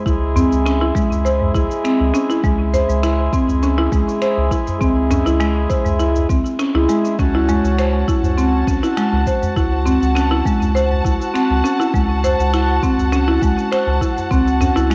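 A buzzing, woody marimba played with medium hard mallets carries dry, filtered arpeggios up front through this earthy organic downtempo excerpt in C# harmonic minor at 101 BPM, over a reedy, breathing harmonium, a round, deep analog bass, an electronic kick, a faint electronic shaker with finger snaps and a very quiet, small udu, while a dark, bowed chamber string section adds smooth sustained chords from 7.2 s as the harmony moves from C#m to F#m/C#, all set in a cassette-tape home recording with spring reverb.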